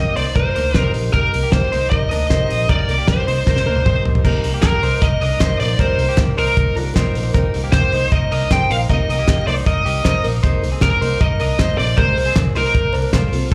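A distorted, high-gain lead guitar sits up front and carries the melody from the start until 12.9 seconds, its dark picked tone thickened by slapback echo and a digital delay. This is a restless, bittersweet slice of jangly indie pop in C minor at 155 BPM in a straight 4/4, cut from a longer piece and heard as a live gig through a club PA. Beneath the lead, a picked dreadnought acoustic guitar adds full-bodied accompaniment in the background, while a bright, twangy clean electric guitar, recorded direct and compressed, spins arpeggios, both touched by slapback echo. A foam-muted vintage bass gives round, punchy low notes, and a cloth-damped drum kit with a fat snare, tight kick and dark cymbals enters at 0.2 seconds, playing a fill just before the music moves into a new section at 4.2 seconds. Crisp group handclaps join in the background, and a woody kalimba with short thumbnail plucks adds a second line, briefly at 6.8 seconds and then from 10.0 seconds to the end, as the harmony shifts from Cm7 to Abadd9.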